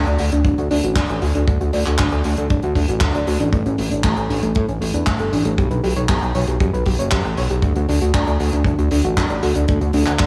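A fat, detuned sawtooth analog bass sits up front with a filter sweep in this sunny, danceable italo disco clip at 117 BPM in D major, moving through D, Asus4 and G/B before returning to D at 7.6 seconds. Soft, round plucked arpeggios, dark-toned and layered with a touch of noise, ripple above it through chorus and tape echo. A damped 70s drum kit with handclaps and hi-hat carries a dry, rolled-off top and gated reverb, joined at 0.4 seconds by a tight, polished kick, all set in a light small-room ambience.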